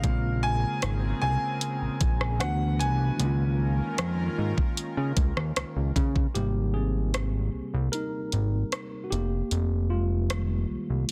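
A dense, heavily limited modern master set in a digital ambience frames this contemporary R&B excerpt, with a longing, sensual mood. A clear concert grand piano with deep bass and long sustain carries the delayed melody high in its range, while a worn, slightly out-of-tune tine electric piano, lightly overdriven as if through built-in speakers, supplies the accompaniment. Beneath them, a lush, airy unison pad of detuned sawtooth layers with a noise layer holds sustained chords, bright with chorus and breathing under sidechain pumping. A fat, saturated analog bass with a filter pluck and fast attack sits up front beside a produced, tape-toned drum kit of knocking kick, warm hi-hats and rim click. The grand piano and pad drop away just before 6.4 seconds, where the kick falls silent and the electric piano takes a solo over the bass, hats and rim click as the harmony moves from Abmaj9 to F9sus4.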